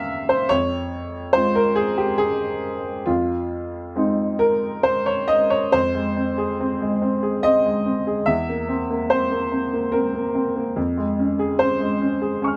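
Neoclassical minimalist piano in F minor, this wistful, melancholic excerpt moves in a rubato 3/4 at roughly 66-74 BPM, carried entirely by a solo upright piano ranging from E2 to F6. The piano sounds woody and boxy, placed up front by close, detailed microphones with light reverb, as its harmony circles through C7/E, Dbmaj7/F and Fm7. A second section begins at 5.8 s on a plain Fm chord before returning to the same C7/E and Dbmaj7/F colours by 10.8 s.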